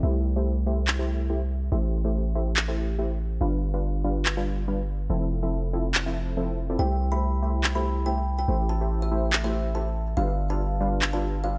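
A punchy, detuned supersaw stab carries the riff up front through this lush, emotional future bass excerpt in A minor at 142 BPM, its low-pass filtered sawtooth chords cycling through C6, Am7, G7 and Fmaj7 over a deep, mellow 808-style sine bass with long decaying notes. Electronic handclaps enter at 0.9 seconds in a half-time, swung feel with small room ambience. At 6.8 seconds a woody, hollow kalimba melody rings out, trailed by digital delay in a reverberant digital space.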